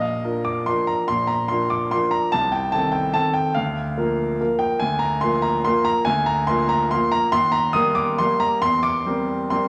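Elegant and sparkling, this short excerpt from a longer classical piano waltz moves in 3/4 at 143 BPM with uneven beats and a free, rubato feel. A solo grand piano plays throughout, its tone clear, natural and intimate, sitting up front with long sustain and the audible noise of its action. The part spans from Bb1 up to Eb6, reaching from deep bass notes to bright upper registers. The harmony opens on Bb, passes through Adim/C at 2.3 seconds and Bb/D, then arrives at Eb at 7.3 seconds before turning to C7/E near the close. A wet recital hall reverb surrounds the instrument, lending the whole passage a graceful, airy glow.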